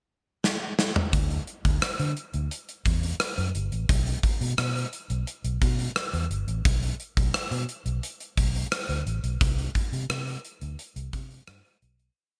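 A gated 1980s drum kit leads this uplifting, nostalgic pop piece at 87 BPM, opening with a fill at 0.4 seconds before settling into a big backbeat with a punchy kick, a medium-tuned snare, rim clicks, hi-hat and toms, all up front in a bright stone room with gated reverb. At 1.1 seconds a dark, round, foam-muted electric bass joins with a syncopated pop-funk line with muted ghost notes, sitting up front beneath the kit. The bright digital production carries lossy compression artefacts, and the short piece fades out from 9.4 seconds.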